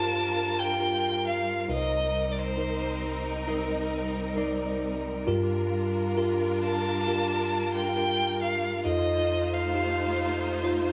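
A slow, straight 4/4 pop pulse at 67 BPM carries this longing, melancholic G minor passage cut from a longer piece, where an up-front bowed violin with focused vibrato sings the melody over a bright, bell-like tine electric piano and a smooth-topped studio string section sustaining expressive chords with portamento, moving from Gm7 through Cm7 back to Gm7 and on to F7, all in a stone room's wet reverb, before the electric piano adds a fill at 10.6 seconds.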